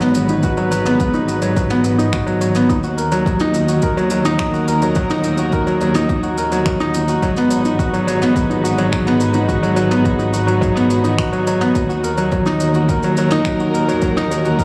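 Piano and strings electronica in G# minor at 106 BPM in a straight 4/4, this cinematic, intimate excerpt cut from a longer piece moves between G#m7 and D#m chords across its 14.6 seconds. Up front, a dark baby grand piano plays a mellow riff with short sustain and audible action noise, trailed by a digital delay. Beneath it, a distant studio string section holds sustained chords with a reedy, gut-string tone and light vibrato, while a clear symphonic double bass section carries the bass line with focused, bowed vibrato and sidechain pumping. A vintage brush drum kit sits low in the mix, its finger snaps, shaker and toms rounded by a rolled-off top, and an electronic kick drum joins at 0.4 seconds with a punchy, layered attack that sounds re-recorded in a small room. A moderate concert hall reverb lends the whole a spacious, filmic depth.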